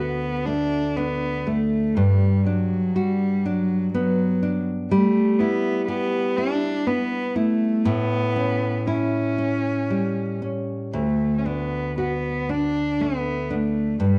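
A bowed cello and a fingerpicked nylon-string guitar begin together, both up front, in this nostalgic, tender Celtic folk piece cut from a longer work. A single cellist carries the melody in a rich, expressive voice, with vibrato and portamento colouring each phrase. Beneath it, the classical guitar gives a bright acoustic accompaniment, and finger squeak can be heard. The music moves in a gentle three-beat metre with uneven, rubato pulses, passing through D, Gmaj7, Em/G and A7 before the opening section returns on D at 10.9 seconds. A moderate recital-hall reverb and a dark, warm production surround the duo, lending the short passage an intimate glow.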